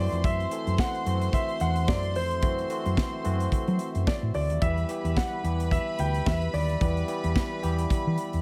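Over a punchy, up-front modern drum kit and a round, dark hollow-body electric bass swinging at 110 BPM, this driving, glamorous disco excerpt sets an intimate grand piano melody with audible action noise against a floating, sul tasto violin section with tape echo, a barky, lightly overdriven electric piano and a background French horn section holding chords with light vibrato as the harmony moves from F#m7b5 to Em at 4.6 seconds.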